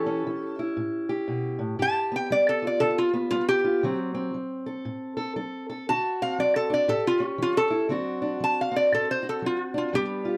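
A dry, close 1970s-style studio sound with light reverb frames this gritty, laid-back acoustic country blues excerpt in D mixolydian at 118 BPM with a swung feel, where a metallic, nasal lap resonator guitar, played with a steel bar and fingerpicks and touched with slapback echo, carries the slide melody up front over a dark, boxy fingerpicked parlour steel-string acoustic guitar, moving through A7, G7 and D7 across 10.4 seconds.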